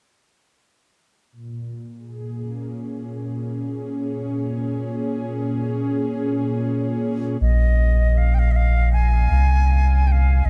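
A round, deep sub bass sits up front from 7.4 s, arriving together with a pure wooden flute melody with a crisp attack and vibrato, carried by dub echo in a high register. Beneath them, a smooth, detuned analog pad with chorus holds sustained chords from 1.3 s, moving from Bbm7 to Bbm9 when the others enter, until the cut at 10.5 s. This hazy ambient dub piece in Bb minor moves at 79 BPM in 4/4 with a light 16th-note swing, tuned to A4 = 443 Hz, set in a small room with light reverb and some lossy compression artefacts.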